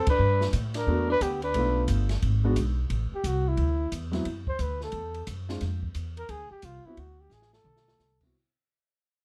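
Playful and sophisticated, this short cut of small-group swing and bop moves at 177 BPM in 4/4 with a swing feel, opening on a band accent. A mellow, close-miked flugelhorn carries the melody with light vibrato and scooped notes over a woody, growly pizzicato upright bass, while a breathy tenor saxophone adds a brief second line until 1.9 seconds and a concert grand piano with audible action noise and long sustain enters on accompaniment at 0.9 seconds. An acoustic drum kit with dark cymbals and a boomy kick sits under light reverb in a dark production, adding a fill near the end as the music fades out from 2.9 seconds.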